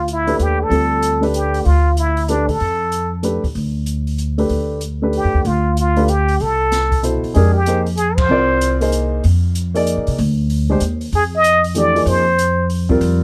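A plunger-muted trumpet with a wah-wah edge, light vibrato and a smooth top opens this searching, spiritual modal jazz passage in a swung 3/4, joined at once by a woody pizzicato upright bass and, moments later, an airy drum kit with dark cymbals and a boomy kick. A grand piano with short sustain comps beneath the trumpet's solo phrases, which sit up front in plate reverb and break off between lines. At 7.3 seconds the harmony shifts to a new section, with a band accent at 8.1 seconds, all captured close and detailed in this cut from a longer piece.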